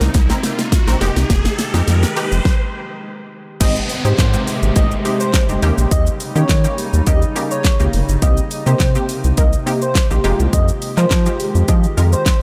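This upbeat, summery dance-pop excerpt at 104 BPM in Ab major opens on a build-up, with a riser and a punchy drum fill, while a lush detuned pluck, a glassy FM pad and a round, deep analog bass pump to the sidechain over Cm7 and Fm9. After a brief stop at 2.5 seconds, the drop lands at 3.6 seconds: the fat-snared, layered pop kit and dark bass sit up front. An airy, dreamy lead with vibrato and diffuse delay floats above the ethereal pad as the chords move through Abmaj7, Eb7, Cm7 and Fm9.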